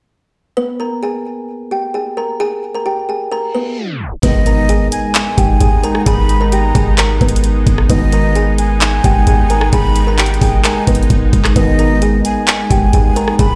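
An eerie, menacing half-time trap piece opens with a woody, ringing kalimba melody with digital delay, sitting up front in a bare room with large studio reverb. Near 3.5 seconds a reverse cymbal rises in the background, a tape stop pulls the sound down, and an impact lands at 4.2 seconds as most of the arrangement arrives. There a deep, long 808-style bass and a trap kit with a knocking kick, bright hats, handclaps and rim clicks take the front, while a breathy, mellow concert flute adds a second line, close-miked, unsteady and echoed with delay. An airy, detuned sawtooth pad with chorus fades in behind them, holding sustained chords over the G# minor harmony. Short stabs from a dark brass ensemble sound in the background three times, giving the groove a classical, ominous weight.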